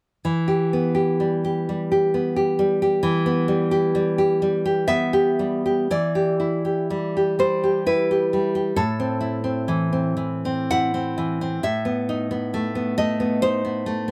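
A warm, full-bodied nylon-string guitar, fingerpicked and up front, carries this melancholic, passionate romantic piece for solo classical guitar, a short cut from a longer work in E minor. Moving in a slow 3/4 at around 63 BPM with rubato and uneven beats, it ranges from A2 to F#5 and shifts from E minor to A minor at 8.8 seconds and onto B7 over A at 11.6 seconds. Light reverb gives the deep classical tone a touch of space, and the guitar plays alone until it ends at 14.1 seconds.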